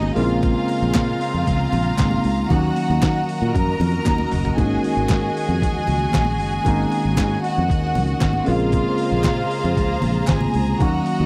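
A straight 4/4 disco groove at 116 BPM in Bb minor sets a sultry, glamorous mood in this short cut from a longer piece. A gritty, pitched-down sampler-style drum kit with a thumpy kick, a medium-tuned snare, hi-hat, toms and handclaps enters at 0.2 seconds and adds a brief fill at 4.1 seconds. It sits beside a dark, round fingered electric bass with a foam-muted tone, very quiet high-tuned congas, and a crisp group handclap tucked in the background. A barky tine electric piano, lightly overdriven through a combo amp and treated with phaser, carries the accompaniment over Bbm9, Ebm7 and Ab7sus4 before returning to Bbm9. Two bowed string sections complete the arrangement: one plays a biting, earthy second line with light vibrato, and the other holds lush, focused sustained chords. The sound is dry and close, in a 1970s studio style.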